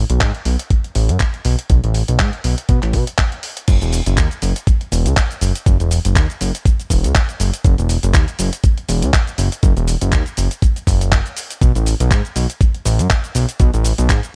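Nu-disco with a cosmic, groovy feel and a swung sixteenth-note lilt, cut from a longer piece, where a fat, detuned sawtooth analog bass with a fast attack and a filter sweep sits up front beside a gritty, thumpy electronic kick. A compressed, dusty soul sampler-style kit adds crash cymbal, handclaps, hi-hat and shaker in a touch of studio reverb, and the track hits its drop at 3.7 seconds.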